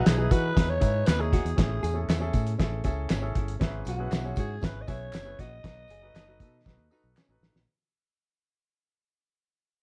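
A dark, lightly reverberant production with muffled, cloth-damped drums up front gives this fading, joyful slice of uptempo 1960s-style soul in E major at 118 BPM a lo-fi, gritty punch, with a fat snare and tight kick driving a danceable straight 4/4 groove. A raspy alto saxophone with light vibrato carries the melody over woody upright piano, a fingered electric bass, a dark, compressed hollow-body jazz guitar riff in the background, and soft handclaps and tambourine. The band hits an accent from 5.6 seconds, a distant, mellow horn section adds a brief second line at 6.1 seconds, and a drum fill closes the passage from 6.7 seconds.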